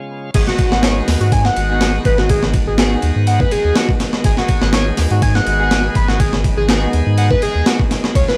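This short cut from a longer breakbeat track has a dry hardware sound, with little reverb and a layer of vinyl crackle. The mood is gritty and energetic, at 123 BPM in G# minor with lightly swung sixteenths. A brilliant, shouting tonewheel organ opens alone, holding sustained chords in the background, shaped by overdrive, key click, a slow rotary speaker, vintage 12-bit sampler grit and sidechain pumping. At 0.3 s the drop lands on G#m7. An up-front, sampler-style drum kit arrives, compressed and overdriven, with a thumpy kick, medium-tuned snare, hi-hat, ride and crash. With it comes a deep, thick saturated sub bass, and above them a screaming, guitar-like synth lead plays a riff, its sawtooth and square tones colored by ring modulation, vibrato, phaser, cassette tape and tape echo. From 1.7 s a chamber string section adds rich, bowed ensemble stabs with vibrato and tape echo in the background.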